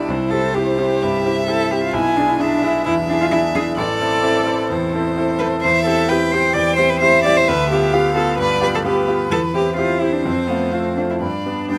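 A piano trio begins together in a graceful, cheerful classical-period passage taken from a longer movement and shaped with rubato: an airy, intimate violin sings the melody sul tasto with light vibrato and soft attack, sitting a little behind an up-front cello that carries a gentle second line, while a clear concert grand with deep bass and an open tone provides the accompaniment, captured by close, detailed microphones in light reverb.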